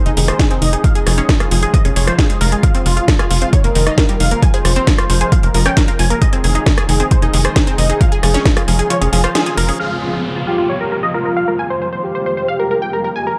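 A pumping mix sits in a light reverb, with a punchy, tape-tinged electronic kick and a tight sawtooth sequencer bass pushed up front in this bittersweet, driving slice of uplifting trance. A detuned supersaw stab carries the melody, coloured by phaser, vintage 12-bit sampler grit, a low-pass filter and digital delay. A shimmering, ethereal pad of sustained chords glows in the background, while a round, bright analog pluck spins arpeggios through chorus and delay. A layered techno kit adds a cracking snare, metallic hats, rim clicks and crash cymbals, all filtered and re-recorded in a small room. The kick drops out at 8.9 seconds, and a band accent follows just before a new section at 9.8 seconds. There, filter sweeps run across the supersaw and pad, a velvety synth lead with vibrato takes up a second line, and an electronic downlifter falls beneath the minor-key chords.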